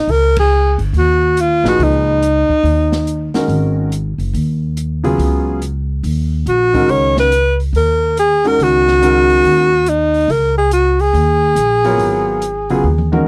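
A dry, close 1970s-style studio sound frames this spiritual, hypnotic modal jazz swing excerpt, where a breathy, subtoned alto saxophone with vibrato and scooped notes carries the melody up front, pausing from 3.4 to 6.5 seconds, over woody pizzicato upright bass, a dark small-room drum kit with a punchy kick that ends on a fill, and a warm grand piano, its action noise audible, which enters at 1.6 seconds.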